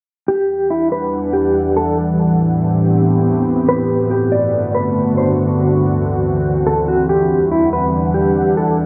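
Spacious and hazy, this brief atmospheric cloud-rap fragment at 141 BPM in a half-time feel sets a dark, clean electric guitar melody with tremolo and tape echo over an ethereal, detuned pad of sustained chords shimmering with ensemble chorus and phaser, moving from Em7 through Am7, Gmaj7 and D7 back to Em7 in a plate-reverb haze.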